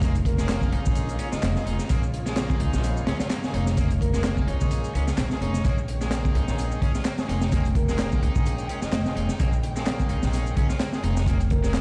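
Breakbeat with a swaggering, funky attitude, this short cut from a longer piece sits on a single minor-seventh chord and a swung sixteenth-note feel. A crunchy, saturated breakbeat kit with a punchy kick, high-tuned snare and hi-hat sits up front beside a woody, thumpy pizzicato upright bass, while a layered electronic shaker and handclaps add a produced sheen underneath. An overdriven, picked electric guitar riff carries tube saturation and vintage 12-bit sampler grit with dub echo, and a bright, tight horn section punches out octave-doubled stabs, also trailed by dub echo. Behind them, a lush, bowed symphonic string section holds sustained chords with sidechain pumping. From 0.3 seconds a soft, breathy flute-like synth lead sings in the background, colored by chorus, vibrato, an AM radio sound and dub echo. The mix sounds like a big sound system in a bare room, with large studio reverb and vinyl crackle, yet the close parts stay fairly dry.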